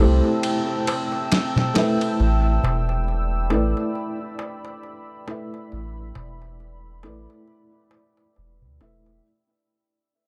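A round, deep dub sub bass sits up front in this brooding, cinematic trip hop excerpt at 68 BPM with a swung 16th-note feel, moving from Am7 to G6 beneath a soft, felt-muted upright piano coloured by harmonic tremolo and tape echo. A moody, warbling ambient pad of detuned sawtooth unison with a sub octave holds sustained chords through chorus and built-in reverb, while a small, high clay-shell darbuka enters at 0.2 seconds. A gritty, compressed sampler-style soul kit of ride cymbal and snare plays only from 0.4 to 2.2 seconds, and the dark, dry production fades out across the whole fragment.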